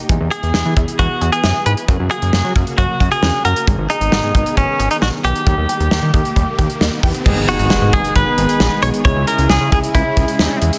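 A dense, heavily limited modern mix with light small-room reverb frames this nocturnal, driving synth-pop excerpt in G# minor, moving at 134 BPM in a straight 4/4. Up front, a polished acoustic drum kit with a tight kick, medium-tuned snare, hi-hat and crash sets the pace, while a thick, detuned sawtooth bass with a filter pluck holds the low end. A bright, twangy clean electric guitar, recorded direct and compressed, carries the picked melody with tape echo. In the background, a vintage string machine of violas lays slow-attack sustained chords with ensemble chorus, and a lush, punchy unison pluck with ring modulation, phaser and tape echo spins arpeggios until 7.2 seconds. A very quiet electronic riser begins at 5.7 seconds, and at 7.3 seconds its impact lands as a bold, brassy analog synth brass with chorus and a filter sweep joins over a progression that moves from E, F#, G#m and D# to G#m and C#m.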